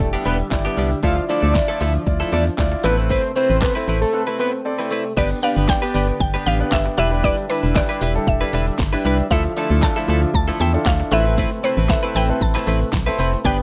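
A rough home-demo mix with light digital reverb carries this carefree, upbeat dance-pop excerpt at 116 BPM in straight 4/4, where a fat, detuned analog lead with vibrato sings the opening melody until 4.5 seconds over a pumping, organ-like FM bass that sits dark and up front, a clear concert grand piano with audible action noise, a twangy direct-recorded clean guitar riff with subtle chorus, a very quiet, warbling unison pad, a punchy pop drum kit with handclaps and crash, and a grainy egg shaker in the background, before a short break gives way at 5.2 seconds to a woody, round, mallet-like synth pluck with chorus and delay taking over the melody as the chords move from G through Em7, Dmadd9 and Amadd9.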